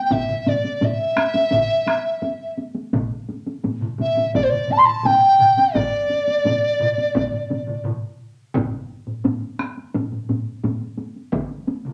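A steady, straight 4/4 pulse at 86 BPM drives this powerful Japanese traditional taiko piece in D suspended pentatonic, cut from a longer work. Up front, a mellow, hollow bamboo dizi with a buzzing membrane, soft attack and vibrato carries the melody until 7.9 s. Beneath it, solo taiko drums on hard sticks and three taiko ensembles sound within a club reverb, most of them in a small room: one ensemble on heavy sticks, another vintage and band-limited in the background. After a brief stop, the drums carry on into a closing section from 8.5 s to the end at 11.9 s.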